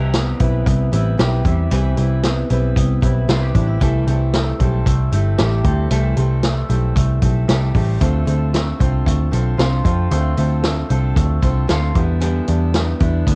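A dark, round, foam-muted electric bass sits up front in this youthful, nostalgic jangly indie pop excerpt at 114 BPM in C major, joined from 0.1 s by a vintage drum kit with a punchy kick, a medium-tuned snare, hi-hat and a rolled-off top. A fingerpicked steel-string acoustic guitar, complete with finger squeak, carries the accompaniment, while a twangy, slightly broken-up electric guitar through a small old amp plays arpeggios bathed in spring reverb and analog delay. The home cassette recording gives the acoustic guitar, electric guitar and drums a tape grain under light reverb as the chords move from Cmaj7 through Am7 and Dm7 to Em7.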